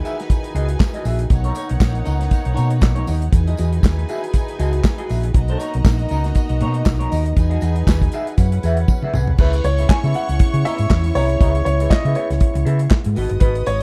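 Glamorous and celebratory, this dark, dry disco excerpt at 119 BPM rides a lightly swung groove from an up-front soul drum kit with handclaps and a jingly background tambourine, a round, punchy hollow-body bass, a clean semi-hollow guitar with phaser, biting bowed strings with slapback echo, and mellow French horn chords over major-ninth harmony, until a drum fill ushers in a clear grand piano melody at 9.4 s as the chords turn minor.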